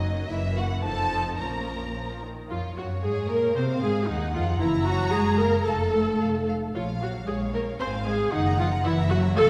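In a rubato 2/4 at 113 BPM, this quick, dramatic and urgent classical-period movement for string orchestra in Bb minor, cut from a longer piece, gives the melody to a lush, expressive violin section with a soft attack over a more distant second violin line, while focused, smooth-topped violas carry the accompaniment and cellos sliding with portamento join a close, rich double bass section up front on the bass, all bowed with vibrato and set in a scoring-stage reverb heard from further back as the harmony moves from Gb7 through F7 to Bbm.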